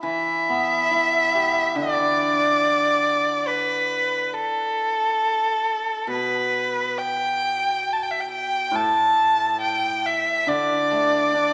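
Chinese traditional music for a small chamber ensemble, this short cut from a longer piece is graceful and festive, moving at a rubato 69 BPM in 4/4 in the D zhi mode. A single bowed erhu carries the melody up front from start to finish, ranging from A4 to A5 with a clear, smooth and even tone, colored by vibrato and portamento and heard close. Beneath it, a hammered dulcimer supplies accompaniment between A2 and G4, sitting lower in the mix with a bright, shimmering, ringing acoustic sound. Both parts play throughout the 11.5 seconds. A recital hall reverb with a 1.7-second decay gives the ensemble a lingering space, while a layer of vinyl crackle adds an aged patina to the recording.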